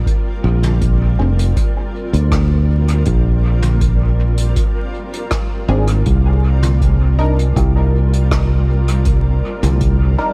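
A deep, meditative ambient dub excerpt where a blurred, granular cloud pad fades in on sustained chords over a round, up-front fingered electric bass, a dry analog kick, and a brushed jazz kit with hi-hat, rim clicks and toms trailing dub echo, while a muted sawtooth chord stab enters at 1.2 seconds through phaser, analog chorus and echo, all set in a small room with vinyl crackle as the harmony moves from Bb to C7(no3).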